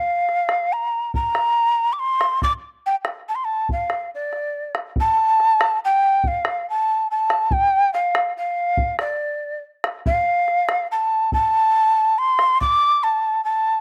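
Festive yet wistful, this short Andean folk piece moves at an unhurried 71 BPM in a straight 3/4 lilt. A large wooden quena carries the melody throughout, ranging from D5 up to D6. Its breathy, mellow tone has a crisp, chiffy attack, gentle vibrato, softened highs and an unsteady quality, and a slapback echo trails each phrase. A deep, dark bombo joins at 0.3 s and drops out at 12.8 s, sitting a little lower in the mix with a small-room resonance. Both instruments sound close and up front in a dry outdoor setting with little reverb, and the opening phrase returns at 5.0 s before this fragment of a longer piece ends at 13.8 s.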